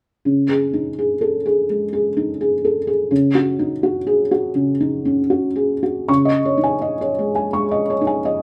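Rubato phrasing over a loose 83 BPM pulse in 4/4 shapes this wistful, intimate fragment of neoclassical minimalist piano: a lone felt-muted upright, dark and mellow with thick felt, short sustain and audible action noise, sits up front in light reverb, spanning C#3 to C#6 across suspended C# harmonies that shift at 3.1 seconds and return at 6.1 seconds as a second section begins.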